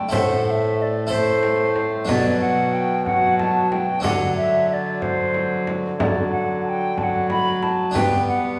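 Set in the wet reverb of a church or concert hall, this short cut from a longer classical piece is a solemn, courtly Renaissance-style consort dance in 6/8 at 61 BPM, moving from Am through Bm and D to G. An airy, tongued wooden flute carries the melody up front, over a close, dry Flemish-style harpsichord and a reedy, gut-strung viola with light vibrato. Underneath, a distant, brilliant trombone holds the bass while a small frame drum struck with hard hands adds a bright, band-limited pulse from 0.1 to 8.3 seconds.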